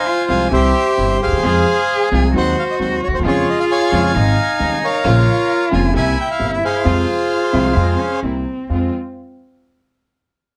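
Light reverb lends a modest sense of room to this passionate, melancholic tango, cut from a longer piece and moving at a rubato 133 BPM in F minor. A reedy, dark bandoneon carries the melody up front until 8.2 seconds, alongside a single bowed cello with vibrato, portamento and a nasal, boxy tone. A vintage grand piano supplies smooth accompaniment, a woody, growly pizzicato upright bass anchors the low end, and very quiet chamber strings add soft-attack bowed stabs as the harmony passes through Ab7/Eb and C7 before settling on Fm at 8.7 seconds.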